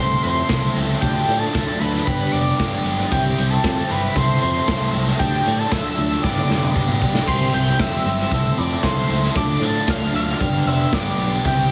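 Carefree and jangly, this short indie rock excerpt in a straight 4/4 moves through a looping Am/C, Dm, G, C progression, with a fat, mellow analog synth lead carrying the melody high up, coloured by vibrato, a filter sweep, slapback echo and plate reverb. Beneath it, a biting overdriven guitar and a raw garage guitar with chorus and slapback echo, set further back, play picked riffs over a punchy fingered electric bass, while a bright, reedy tonewheel organ with slow rotary speaker sustains chords very quietly and a gritty, boomy garage drum kit sits up front with a drum fill from 6.2 to 7.3 seconds. At 6.3 seconds a shimmering, dreamy FM bell enters very quietly as a second line, all within a small room and a heavily compressed, radio-like sound.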